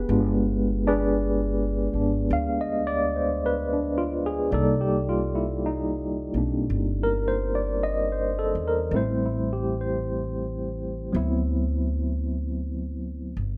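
This jazz ballad moves at a slow 54 BPM in 4/4 with a swung eighth-note feel, and its intimate, tender mood sits in G major, tuned slightly low to A4 = 436 Hz. A mellow tine electric piano carries the accompaniment, its worn, slightly out-of-tune voice colored by a medium tremolo and heard clean through a combo amp, placed up front. Beneath it, a pizzicato upright bass with steel strings gives a woody, growly acoustic foundation, also close and present in the mix. The harmony drifts from G7b9 through Cm9 and Am7 to D13, leaving the passage open-ended, as befits a short cut from a longer piece. Both parts begin together at 0.0 seconds, with the piano stopping at 13.4 seconds and the bass ringing on until 13.6 seconds. A moderate large-studio reverb and a dark, warm production wrap the duo in a soft, late-night glow.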